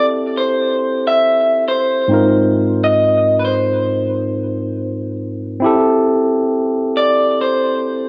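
A dry, close 1970s-style studio sound with light reverb frames this smooth, romantic reggae excerpt at 68 BPM with a swung 16th-note feel, where a bright, twangy, slightly broken-up electric guitar through a small old amp carries the picked lo-fi melody up front, bathed in spring reverb and tape echo, over a barky, clean tine electric piano played through a combo amp with slapback echo, moving from Am7 to Ab6 at 2.1 seconds and back to Am7 at 5.6 seconds.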